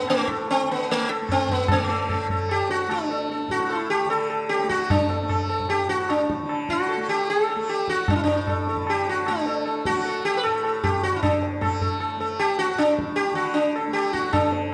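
Hindustani classical music with a longing, introspective mood, at 152 BPM and speeding up throughout, where an up-front, plectrum-plucked sitar with buzzing sympathetic strings carries the melody from A3 to B4 over a bright, softly plucked tanpura drone and a low-tuned, ringing tabla that sounds distant, entering at 0.1 seconds, all set in the reverb of a recital hall in this brief excerpt cut from a longer piece.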